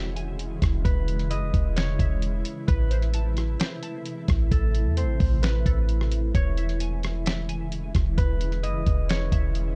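Floating and blissful, this short cut of atmospheric cloud-rap hip hop moves at a half-time feel, with a mellow, ringing fingerpicked Celtic harp melody, a shimmering, ethereal pad pumping under sidechain and reverb, glassy, crystalline pluck arpeggios tucked in the background, a deep, boomy 808-style bass up front, and a muffled, pitched-down sampler drum kit with a thumpy kick entering at 0.2 seconds, all in a dark digital ambience.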